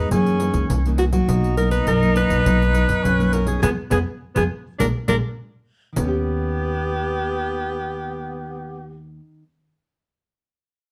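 Dark, softly reverberant production frames this yearning, bittersweet samba-choro fragment, where a mellow, breathy alto saxophone carries the melody up front with vibrato and subtone, a whispered, intimate tenor saxophone with scooped notes sings a second line beneath it, a fingerpicked classical nylon-string guitar with audible finger squeak accompanies, a woody pizzicato upright bass sits close, and a jingly, dry pandeiro played with soft hands drops out at 6.1 seconds, just after a band accent from 3.6 to 6.0 seconds gives way to a new section.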